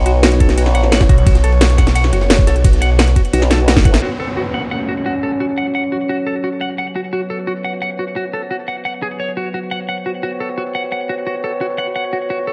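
Aggressive and futuristic, this dark technical drum and bass fragment opens on a drop. A knocking electronic kick, a drum and bass kit with a cracking snare and low-passed metallic hats, and a very quiet, gritty jungle sampler-style kit sit beneath up-front basses, where a formant-sweep wobble bass is briefly replaced by a swirling, thick phased detuned saw bass before returning. Over this, an eerie, nasal FM drone holds sustained chords with chorus and sidechain pumping, and a twangy clean electric guitar plays arpeggios through lush chorus and digital delay. A drum fill and a band accent at 3.9 seconds close the drop, then a downlifter enters and a filter sweep works on the drone as drone and guitar continue to 12.5 seconds.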